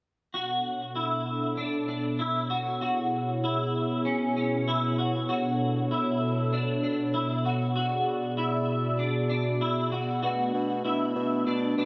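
Dream pop at 97 BPM in B dorian, haunting and hazy, this short cut opens at 0.3 seconds with dark, clean picked electric guitar arpeggios, doused in ensemble chorus and tape echo, over a hollow, flute-like pad of detuned soft tones with slow attack and long release. The chords move between Bm7, E69/B and E7/B, all bathed in a wet plate reverb. At 10.2 seconds a mellow bassoon enters up front, playing a low B in a classical style as the harmony returns to Bm7.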